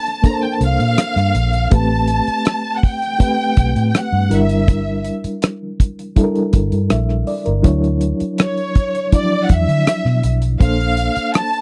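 A rich, expressive violin section carries the melody in this smooth 1970s-style soul fragment, over a reedy, slightly out-of-tune electric piano with fast tremolo, a dark, round, foam-muted fingered bass entering at 0.6 seconds, and a damped drum kit with a tight kick, hi-hat and rim click, all captured in a dry, close studio sound.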